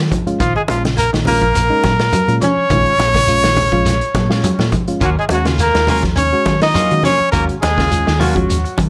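Driving and hypnotic, this afrobeat excerpt moves at 104 BPM in Eb minor, with a clear, up-front trumpet carrying the melody with light vibrato over a reedy electric piano bathed in plate reverb and a round, dark hollow-body bass. A punchy vintage kit with a pumping small-room sound anchors the groove, while ringing congas, a grainy shekere, a nasal, metallic resonator slide guitar played with fingerpicks, and a semi-hollow guitar playing arpeggios through lush chorus sit in the background. The harmony shifts from Bbm7 to Ebm9 at 5.0 seconds, where a twangy clean electric guitar enters with picked stabs.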